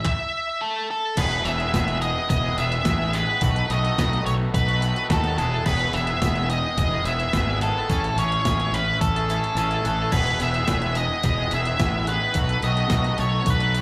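A straight 4/4 groove from an overdriven, clean 12-bit digital drum machine with a thumpy kick, handclaps and crash drives this carefree, upbeat indie rock passage, cut from a longer piece and heard live through a club PA, where a dark octave-fuzz lead guitar carries the melody up front over a bright raw garage guitar riff, then at 1.2 seconds a round, fuzzy fingered bass, a twangy, scooped electric guitar riff and a grainy egg shaker join in, and a bell-like glockenspiel played with soft plastic mallets rings in at 9.0 seconds just before the kick and snare briefly drop out at 9.6 seconds.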